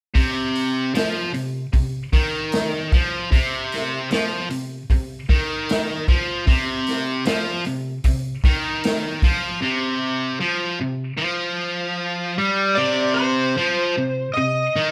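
Recorded live in one room with light reverb, this heavy, smoky cut from a longer blues rock and southern rock power-trio piece in C minor moves at 76 BPM: a bright, double-tracked distorted electric guitar riff runs throughout, a vintage acoustic drum kit with a punchy kick and rolled-off top plays until 9.4 seconds, and an up-front overdriven slide guitar melody enters at 12.8 seconds.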